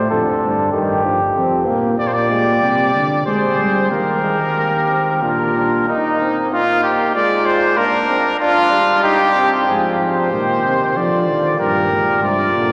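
This classical brass canzona in triple time has a driving yet solemn character, and the fragment is cut from a longer piece. A smooth-topped flugelhorn carries the second line from the opening, a warm trombone with vibrato plays the accompaniment, and a mellow tuba with light vibrato anchors the bass. At 2.0 seconds a clear trumpet with light vibrato and a soft attack enters up front with the melody, sitting above the other horns. The tuba drops out for a contrasting middle passage at 5.9 seconds and returns when the opening material comes back at 9.7 seconds. The whole ensemble rings in a cathedral space with a long, wet reverb, which gives the imitative lines a broad, hallowed glow.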